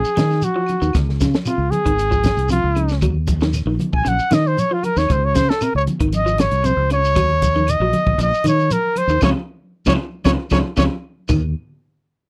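Afrobeat with a driving, intense feel, cut from a longer piece, where a breathy, whispered trumpet solo sits up front over a round, dark fingered bass, slightly broken-up guitar arpeggios with slapback echo, a compact cocktail kit with a high-tuned snare and punchy kick, grainy shekere, woody claves and damped congas, all in a dry, close 1970s-style studio sound, moving into a band accent at 9.2 seconds and a drum fill at 10.3 seconds.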